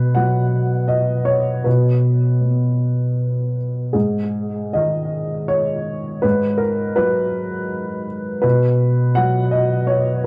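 The pulse moves in a loose, rubato 3/4 at around 80 BPM, with beats that stretch and settle unevenly. This short excerpt of neoclassical minimalist piano feels wistful and intimate. A single upright piano carries the whole excerpt from 0.0 to 10.3 seconds, spanning G#2 to F#5 with a dark, woody, vintage character that sits up front. The harmony drifts from B5 to G#m7 at 3.9 seconds and resolves toward B at 8.4 seconds. A small room adds a wet reverb that lends the mellow, smooth tone a sense of close, private space within a warm production.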